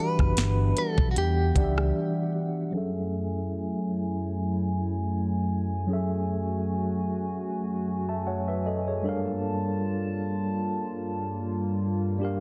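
Moody and late-night, this contemporary R&B excerpt moves at 76 BPM with a gentle swing, opening on Em7 as a bright, clean electric guitar with tremolo and digital delay carries a brief melody over a mellow tine electric piano and a hollow, flute-like pad that pumps beneath the chords. An up-front trap kit with a knocking kick, sharp snare and crisp hats joins a round, punchy, foam-muted bass at 0.2 s, both dropping out at 1.9 s for a break. From 2.7 s the piano and pad carry on alone under a filter sweep, shifting to F#m7 and then Gm7 at 9.1 s, all set in light digital ambience with a dense, heavily limited modern finish.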